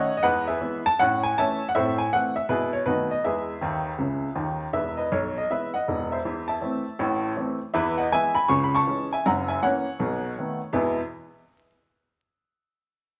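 A warm, woody upright piano carries this playful, exuberant stride jazz excerpt alone from 0.0 to 11.0 seconds, swinging in E major at 160 BPM across a range from E1 to C#6, its slightly detuned, intimate tone sitting up front with audible action noise. A fill arrives at 3.6 seconds, and the harmony moves through chords such as A, Am, C#m, F#7 and B7 before landing back on E at 10.7 seconds. Vinyl crackle and moderate large-studio reverb lend the sound a natural, lived-in character, and the passage is cut from a longer piece.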